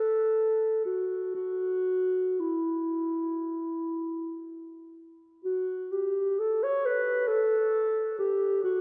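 A dark, distant clarinet rings through a cathedral-like reverb in this lonely, meditative classical fragment for unaccompanied solo clarinet, played with free, expressive rubato at roughly 49-68 BPM in 4/4, its roomy tone sitting up front between E4 and C#5 across 8.8 seconds cut from a longer piece.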